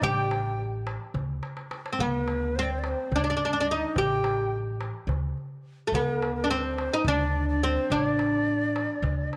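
A bright, plectrum-plucked oud sits up front and carries the melody, its fretless double strings giving a woody, deep voice in this short cut from a longer Turkish makam ensemble piece. Above it, an end-blown reed-cane ney plays a second line with a breathy, tongued, reedy tone and vibrato. An upright bass holds the low end with dark, growly pizzicato on steel strings. A metal-shell darbuka adds crisp strokes in a live room and breaks into a fill from 1.4 to 2.0 seconds. The music moves in 7/8 with a straight feel, and its mood is festive yet stately, while a moderate echo-chamber reverb lends the ensemble a sense of space.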